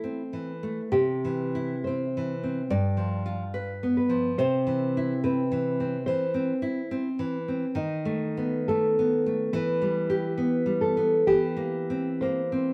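Two nylon-string guitars open together in a melancholic, elegiac romantic duo at 70 BPM, the time pushed and pulled in a rubato with uneven beats. A full-bodied, thumb-plucked classical guitar sings the melody while an up-front, fingerpicked guitar supplies the accompaniment over a progression that moves from Am through C and G7 to B7/D# and Em. Finger squeaks on both instruments and a moderate studio ambience give the sense of two players performing live in one room, in what is cut from a longer piece.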